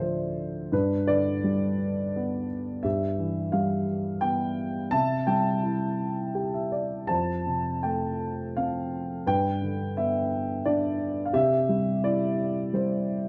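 Classical solo piano in a brooding, moody vein, played with rubato at around 85 BPM in 3/4: a dark concert grand sits up front with a mellow, boxy tone and deep bass under light reverb, moving through chords such as Dmadd9, G, Em/G, C and Fadd9, with a brief fill from 6.0 to 7.1 seconds in this passage cut from a longer piece.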